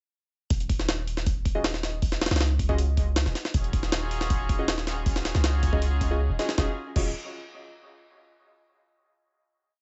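A gritty, pitched-up jungle drum kit with a thumpy kick, high-tuned snare and heavily chopped breakbeat sits up front from 0.5 seconds in this dark, atmospheric drum and bass piece at 158 BPM in Eb minor, over long, deep sine-like 808-style bass notes, sparse nasal chord stabs with chorus and dub echo entering at 1.5 seconds, and a distant, reedy chamber string section holding bowed chords with syncopated pushes from 3.5 seconds, all in a dry, dull-topped mix that settles on a final chord.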